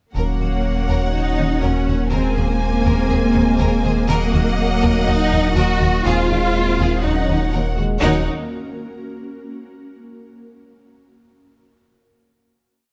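A straight 4/4 pulse at 122 BPM drives this tense, relentless hybrid orchestral and electronic film cue in Eb dorian, where an expressive, close studio violin section carries the melody over a bright symphonic violin section's intense ostinato, a background viola section doubling the tune in unison, a lush cello section, a focused double bass section's driving ostinato, a mellow French horn section's sustained chords, a round sine sub bass holding an Eb1 drone, and an ethereal, airy pad that enters at 1.2 s with chorus, phaser and its own reverb, all set in a lightly reverberant space until a final chord arrives at 8.0 s.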